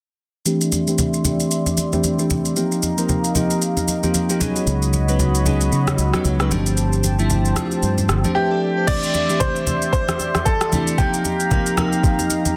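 A crystalline FM electric piano, a detuned sawtooth analog pad and a soft-kicked R&B drum kit with rim click and shaker open this deep, late-night amapiano excerpt at 114 BPM in D phrygian, joined by bright, close conga hits, under a filter sweep that runs to 8.9 seconds, while a round fingered electric bass steps forward from 4.7 to 8.2 seconds and a boxy grand piano carries a delayed melody from 8.3 seconds over suspended ninth chords, all in light digital ambience and a dense, heavily limited master.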